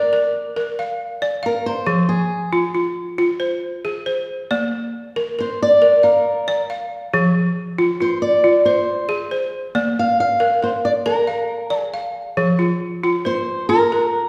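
Flowing and hypnotic, this west African traditional passage, cut from a longer piece, moves at 91 BPM in a straight 12/8 in F dorian, with a dark, boxy fingerpicked swing-style acoustic guitar carrying the melody up front as a solo from 0.0 to 12.4 seconds over the woody, buzzing balafon arpeggios struck with hard rubber mallets and close-miked, full and forward, all set in a church or concert hall with a lingering 1.6-second reverb as the chords alternate between Bb and Fm before a new section arrives at 12.4 seconds.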